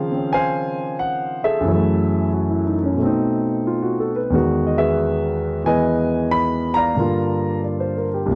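Swung eighths at 90 BPM in 4/4 give this solo jazz piano a swinging, smoky lilt, in an excerpt cut from a longer piece. A concert grand carries the whole performance, spanning C2 to B5 with deep bass, long sustain and audible action noise, sitting up front in a dry, close 1970s-style studio sound with small room ambience. The harmony moves from Dbmaj9 through Gbm9 and Cb7b9 to Emaj9, arriving on Gm7 at 7.0 seconds for a warm, intimate feel.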